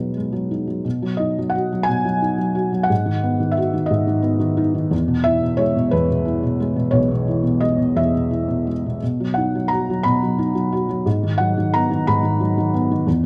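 In a rubato 6/8 at 59 BPM, this tender, lyrical classical piece in B major is carried by a solo felt-muted upright piano, mellow and intimate with audible action noise, placed up front by close, detailed microphones within a moderate recital hall reverb, its harmony moving from B6 through G#m7 and E6 to B and back to G#m7 across 13.3 seconds cut from a longer work.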